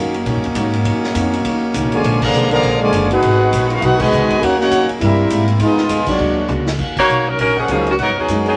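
A brisk, brassy big band swing fragment in Eb minor at 202 BPM opens with a very quiet picked steel-string acoustic guitar, brilliant trombone-section chords, woody pizzicato upright bass and a swinging drum kit with a punchy kick, before a warm, vibrato-laden trumpet section carries the melody over a dark, smooth-topped trombone second line from 1.9 s, punctuated by band accents and a drum fill, and at 7.0 s an up-front saxophone section takes over the tune amid tight, bright trumpet stabs and a fleeting touch of intimate grand piano with audible action noise, within a wet studio ambience.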